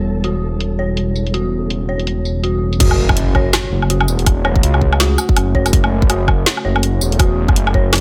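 Half-time drum and bass at 164 BPM in F# phrygian, dark and tense, this short cut opens on Em with a deep, moody ambient pad pumping in the background, eerie inharmonic synth-bell arpeggios trailing tape echo, a rumbling detuned saw bass up front and a faint flickering grainy texture that lasts until 2.8 seconds. There the drop lands on F#m with a very quiet electronic impact and a tight electronic kick joining the already-running kit, whose woody snare, bright hats, tambourine, woodblock and crash sit up front behind low-pass filtering. The mix carries a light digital ambience.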